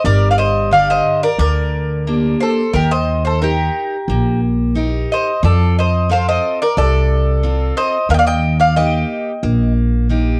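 Greek folk from a bouzouki band at 90 BPM, this moody, bittersweet excerpt moves through Gm, Eb and F as a metallic, octave-doubled bouzouki carries the melody up front over a bright bowl-back mandolin second line, a full-bodied jumbo steel-string guitar with audible finger squeak, and a woody pizzicato upright bass that sits forward in a moderate studio room, with cassette tape coloring the bouzouki, mandolin and guitar of this home recording until the bouzouki and mandolin stop at 9.7 seconds.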